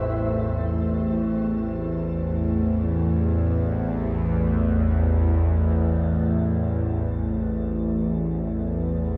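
Dark ambient drone in free time, desolate and unsettling, where a tense, string-like bowed drone with phaser and vibrato sits up front over a deep, moody, full-bodied pad on a single sustained minor chord, while solemn, metallic tubular bells ring out quiet arpeggios in the background through a diffuse delay and shimmer reverb, all within a cavernous cathedral space and a dark production across this 9.2-second excerpt from a longer piece.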